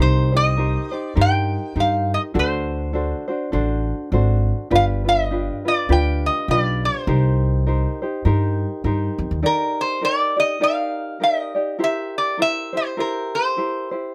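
A metallic, nasal lap resonator guitar carries the melody up front in this sunny, relaxed Hawaiian excerpt, played with slide and fingerpicks at a swung 102 BPM in 4/4. A mellow, light tenor ukulele fingerpicks the accompaniment close alongside it, while a woody, thumpy pizzicato upright bass on steel strings holds the low end until 9.4 seconds. At that point the harmony moves from C minor to Eb major, and the guitar and ukulele carry on alone in a dry, detailed sound until the fragment is cut off at 14.1 seconds.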